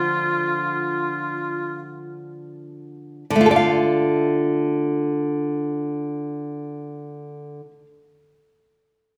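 A reverberant hall with a 1.4-second decay frames this melancholic, yearning romantic duo in D minor, cut from a longer piece and moving in free time. A close-miked oboe with light vibrato plays an F4 melody from 0.0 to 1.9 seconds over a bright, fingerpicked nylon-string guitar with fresh strings, which ranges from D3 to F5 until 7.9 seconds, both up front, with the opening slowing down over the first 3.3 seconds.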